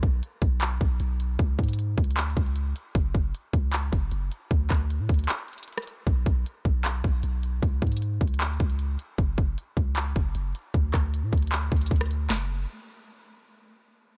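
A trap drum kit and a long sustained 808-style bass open this dark, hard-hitting half-time hip hop excerpt together, both up front, the electronic kit punching with a hard-clipped kick, sharp snare, crisp hi-hats, handclaps and rim clicks over the deep, sine-toned bass that strikes fast and decays, with a break at 5.3 seconds before the drums stop at 12.4 seconds and the bass at 12.7 seconds, all set in a digital ambience that rolls off above 10.9 kHz.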